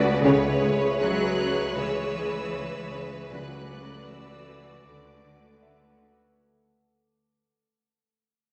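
Cinematic and tense, this uneasy fragment of a longer piece fades out throughout as a lush high violin section carries the melody over a close, up-front second violin line, smooth viola accompaniment, a rich cello riff, a distant cello bass part and a bowed double bass section, with a glassy, ethereal glass harmonica holding beating chords, a detuned organ-like drone with ensemble chorus, a barely audible grand piano adding texture, and hard-mallet timpani entering at 3.3 seconds, all set in a reverberant scoring-stage space.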